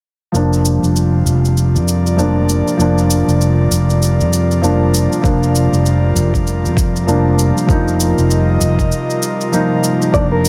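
Organic downtempo with a peaceful, earthy mood and a swung sixteenth-note feel, built on a soft, felt-muted upright piano under a filter sweep and delay, a breathy, detuned pad, and an up-front, growly fretless electric bass, the three pumping against the sidechain while a produced cabasa ticks throughout, a deep electronic kick joins at 5.2 seconds before a break at 8.9 seconds, and a small, fingerpicked nylon-string guitar slips in with brief arpeggios at 10.1 seconds, all in a lightly reverberant studio space.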